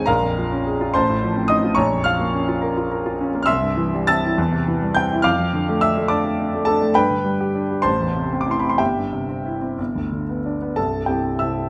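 Close, detailed microphones place a clear concert grand piano up front, its natural tone and deep bass framed by moderate recital-hall reverb. This is a passionate, lyrical romantic character piece for solo piano, cut from a longer work, moving in a flexible 6/8 at roughly 60 to 73 beats per minute in dotted quarters, with free rubato. The piano spans from C1 up to A6, filling the whole 11.7 seconds alone. It opens on shadowed harmonies around B-flat minor before settling into C major at 3.5 s. From there the progression passes through D minor, G and A minor, then comes to rest on a C chord at 10.8 s.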